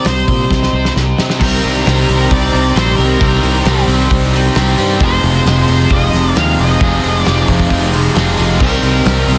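A straight 4/4 pulse at 133 BPM drives this melancholic, hazy shoegaze and dream pop excerpt in C minor, with a loose indie drum kit setting the groove through tight kick, a medium-tuned snare and dark cymbals, and a fill running from 0.5 to 1.4 seconds. A growly, punchy fretless electric bass sits up front from 0.1 seconds, sustaining beneath a harmony that moves from Cm7 to Fm7 and back to Cm7. The guitars stack into a dense wall: a bright, crunchy overdriven riff colored by reverse reverb, a very quiet thick fuzz riff, and, from 1.4 seconds, a sludgy, double-tracked distorted guitar tucked into the background. Above them, an octave-fuzz lead guitar carries the melody through distortion and digital delay. A shimmering, retro pulse-width pad with slow attack and chorus holds sustained chords behind it all, and the small room and heavily limited modern master keep the sound thick and close.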